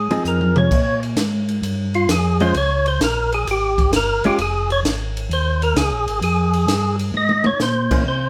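A swung 131 BPM groove in 4/4 drives this bluesy, soulful soul jazz organ trio excerpt, with a compact cocktail drum kit's punchy kick, high-tuned snare and dark cymbals adding fills at 0.3 and 7.1 seconds. A fat, lightly overdriven tonewheel organ with third-harmonic percussion and slow rotary speaker takes the solo melody over Fm7 and Bbm7, while a second, round and clean tonewheel organ with chorus vibrato and slow rotary carries the bass line. A dark, compressed hollow-body jazz guitar comps until 4.4 seconds and returns briefly near 7.9 seconds, all heard as a band playing live in a moderate stone room.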